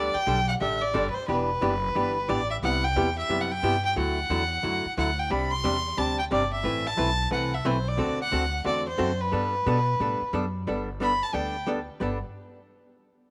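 A clear, bowed fiddle carries the melody in this cheerful, down-home slice of western swing, its nasal, earthy tone touched with light vibrato as a single player sits up front in the mix. Beside it, a miked and amplified hollow-body archtop guitar supplies picked accompaniment, its clean electric sound dark and compressed. An upright bass anchors the bottom with pizzicato gut strings, giving a woody, thumpy pulse. The swung 4/4 groove moves through a colorful run of suspended, seventh and added-ninth chords, from Dsus4 through Amadd9 and D7 before settling on Gadd9. Light reverb surrounds the trio, and the fiddle drops out at 11.7 seconds while guitar and bass carry on to 12.2 seconds in this short cut from a longer piece.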